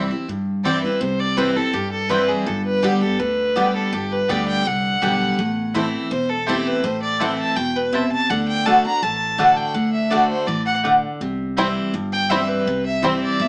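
This driving, haunting bluegrass passage, cut from a longer piece, opens with a bright, full-bodied picked acoustic guitar up front and a woody, thumpy pizzicato upright bass on gut strings beneath it. At 0.6 s a clear, focused fiddle enters close and up front, bowed by one player with light vibrato, carrying a solo as the second line. A mellow, round mandolin joins at the same moment, adding picked stabs on its double strings. The harmony moves from C to G, A minor and D before returning to C. At 11.6 s a twangy, percussive banjo played with fingerpicks briefly takes the melody. The ensemble sits in a moderate studio reverb with a small-speaker sound.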